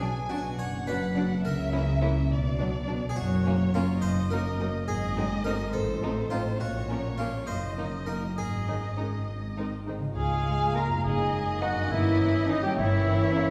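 This whimsical, playful film cue opens on a full, plucked harpsichord carrying the melody alongside a focused, vibrato-rich chamber violin section, with a second violin line, a smooth, even viola section and a thumb-plucked, ringing concert harp arpeggiating in the background. Beneath them, a lush symphonic cello section and a soft-attacked, expressive double bass section supply the bass. Moving at 70 BPM in a lilting 6/8, the harmony wanders through colourful, magical turns, from Bm through Ebm/Gb and Ab7b9 to a suspended Absus4 resolving to Ab. The harpsichord drops out at 9.2 s, and at 10.2 s the music brightens onto Db as a clear solo cor anglais and a pure, close-miked small flute group add new lines while a mellow, roomy French horn section sustains chords through a closing Gdim7. The whole ensemble sits further back in a wet scoring-stage reverb, giving this short cut from a longer piece an enchanted, storybook glow.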